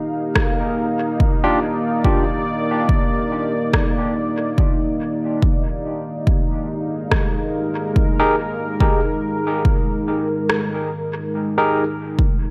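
Ambient dub at 71 BPM in F dorian with a swung 16th feel, deep and hazy, built on a moody, detuned sawtooth pad with slow attack and chorus sustaining chords that move from Ebmaj9 to Fm11 at 5.4 seconds, under a punchy, overdriven electronic kick and a tape-toned rim click carrying dub echo, while a barky tine electric piano, lightly overdriven through a combo amp with 12-bit sampler grit and dub echo, adds a brief early stab and returns from 8.2 seconds before a break at 10.5 seconds in this fragment of a longer piece.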